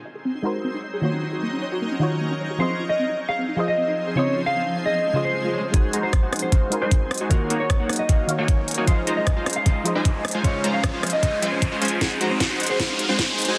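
A bright, punchy detuned supersaw stab riff with a filter sweep arrives at 5.7 s alongside a knocking kick and a trap kit of sharp snare, crisp hats and rim clicks, lifting this lush, playful future bass excerpt at 153 BPM in half-time, where two soft, round plucks, one playing accompaniment with dub echo and one playing filter-swept arpeggios, sit over a shimmering, ethereal pad, while a dark, clean electric guitar carries the melody from 2.6 s, all moving through Ab7, Ebm7, Fm7 and Dbmaj7 with sidechain pumping, a background swell and riser building toward a closing drum fill at 12.0 s in a lush hall reverb and a dense, heavily limited master.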